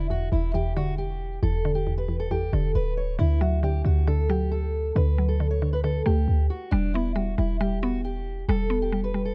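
Brooding and menacing, this half-time trap groove cut from a longer hip hop piece sets a fingerpicked steel-string acoustic guitar melody, low-pass filtered with digital delay and audible finger squeak, over a woody, round mallet-like synth pluck thickened by chorus and a deep, boomy 808-style bass sitting up front, inside a dark, dry production that moves from Em7 to D to Em across its 9.3 seconds.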